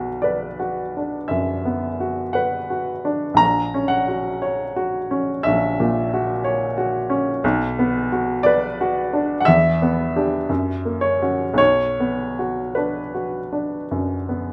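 Mournful and melancholic, this short fragment of a romantic classical nocturne unfolds slowly in B minor, moving between 51 and 61 BPM in 4/4 with a free, rubato feel. A solo upright piano carries the whole passage, spanning A#1 to A#5, with a woody, polished tone that sits up front and decays quickly. The harmony settles on Bm, leans through F#7/A# at 3.4 seconds, returns home, then passes through Em7 and F# before resolving to Bm at 11.6 seconds. Close, detailed microphones catch every note with a clear presence, while a moderate recital hall reverb of about 1.3 seconds lends a gentle sense of space. The instrument is tuned slightly high, to A4 = 441 Hz, and the fragment ends at 14.5 seconds, cut from a longer piece.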